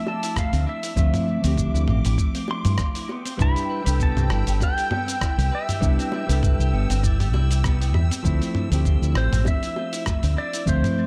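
Sunset chillout at 99 BPM in C major with a relaxed, swung 4/4 feel, where a pedal steel guitar carries the melody with fingerpicked slides and volume swells through tape echo, a dark, fingered electric guitar and a picked clean electric guitar lay down accompaniment and arpeggios, a silky string machine holds phased, chorused chords over Dm9 and Cmaj7, high-tuned bongos sit in the background, a gritty, tape-toned sampler-style kit with hi-hat, rim click, shaker and toms rides on a thumpy electronic kick, and a round, punchy dub bass sits up front in an echo-heavy mix.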